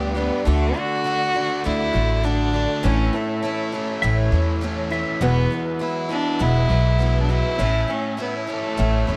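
Rock with a jangly, nostalgic mood, this short cut from a longer piece moves at 101 BPM in a straight 4/4 in A major, with chords shifting from D to A, then Eadd9, and back to A. An up-front, woody upright bass anchors the low end, while a boxy, picked acoustic archtop guitar and a biting, double-tracked overdriven electric guitar riff share the middle register. A dark fiddle carries the melody from 0.2 seconds, bowed by one player with light vibrato and portamento, sitting forward in the mix. Between 4.0 and 5.2 seconds, a clean, compressed pedal steel guitar adds a brief second line, played with fingerpicks and slide and shaped by volume swells. Behind them, a soft, flute-like tonewheel organ holds sustained chords through a slow rotary speaker with chorus vibrato and key click, and a clear baby grand piano adds very quiet accompaniment. The production is dark and warm, with moderate studio reverb.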